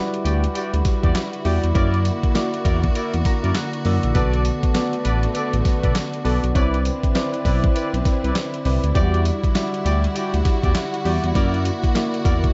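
Soft, round electric-piano-like synth keys with chorus and lush, woody bowed strings open this confident, punchy new jack swing excerpt in E minor at 100 BPM, with a swung 16th-note feel and chords moving from Em9 through F#7b13, Bm7 and Cmaj9. A gritty, pitched-down sampler-style boom bap kit with a thumpy kick, handclaps, hi-hat, snare and tambourine joins at 0.1 seconds, followed by a smooth, gliding, detuned sawtooth bass and tight vintage horn stabs carrying delay, while the mellow keys add a fill from 3.0 to 4.2 seconds. The production is dark, with a digital ambience, and the drums, bass and keys sit up front.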